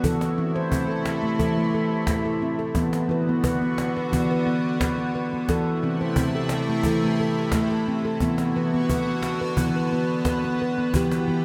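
Set in a generous scoring-stage reverb with a small-room ambience around it, this short passage from a longer piece has a spacious, gentle glow. It is meditative world music with tuned percussion, moving at 88 BPM in a straight 4/4 and tuned slightly high to A4 = 441 Hz. A close-miked handpan of nitrided steel sits dry and up front, its ringing fingertip arpeggios running from E3 to C5 throughout the 11 seconds. Beneath it, an evolving wavetable pad holds sustained chords between C3 and G4, its detuned unison triangle tone morphing behind chorus and its own reverb, bright yet softly attacked with a long release. A snappy acoustic cajon with snares keeps time in a live room, lower in the balance, as the harmony rocks between Am and Bm before arriving on Em at 10.9 seconds.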